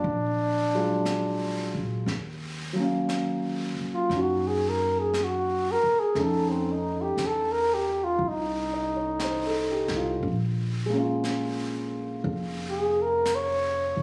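Captured on a phone in the room with light studio reverb, this wistful, intimate jazz ballad in Eb minor drifts at 59 BPM with a gentle swing, as a mellow, up-front flugelhorn takes its solo from 2.1 s over dark concert grand piano, woody pizzicato upright bass and an airy brush kit with a high-tuned snare, moving through Ebm9, F7b13 and Bbm7.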